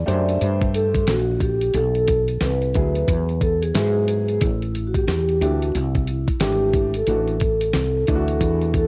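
A swung 90 BPM groove in 4/4 drives this mellow, nocturnal jazz-hop cut from a longer piece in A dorian, with a gritty, compressed sampler-style drum kit of thumpy kick, fat snare and hi-hat sitting up front beside a round, punchy fretless electric bass, while a woody upright piano with long sustain accompanies underneath and a ringing, band-limited vibraphone with slow motor vibrato carries the melody over chords moving from C5 through Bm7 and E to Am7, the drums, piano and vibraphone carrying a cassette-tape haze in a small room with light reverb.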